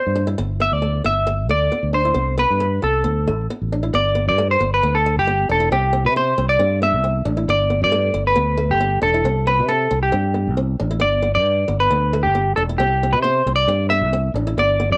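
A clean, hollow-bodied electric guitar carries the melody from the very start, lifted by plate reverb and sitting up front, while a boxy, picked swing-style acoustic guitar picks out accompaniment with a cassette-tape tint, and a round, punchy fingered electric bass joins at 0.1 seconds. This joyful highlife guitar band excerpt moves at a straight 135 BPM in 4/4, in G major, cycling through G, C and D chords. Cut from a longer piece, it has the warm character of a home recording on cassette with light reverb.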